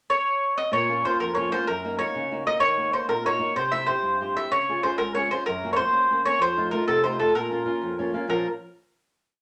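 Italian folk in 6/8, passionate and wistful, where a mellow, round mandolin with doubled strings picks a song-like, motif-based melody from 0.1 s, placed up front. A fingerpicked flamenco guitar enters at 0.7 s with a warm oompah of bass notes and chord figures, moving through Bbm, Ebm and Gb before an F7 leads back to Bbm, and a short nylon-string guitar fill arrives at 7.8 s. Both parts sit close in a reverberant studio room, and the piece closes on a final chord.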